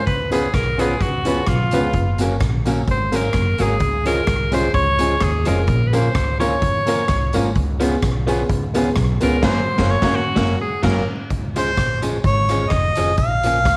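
Ska with a cheerful, upbeat lilt, this short cut features an edgy, forceful alto saxophone soloing up front with vibrato and slapback echo over woody pizzicato upright bass, a street-band drum kit with a boomy kick and dark cymbals, a slightly broken-up lo-fi electric guitar, mellow stabs from a dark upright piano and a very quiet, distant tambourine, as the band hits accents from 9.4 seconds and a smooth-topped harmonica takes the melody at 11.6 seconds, all wrapped in echo-chamber reverb and vinyl crackle.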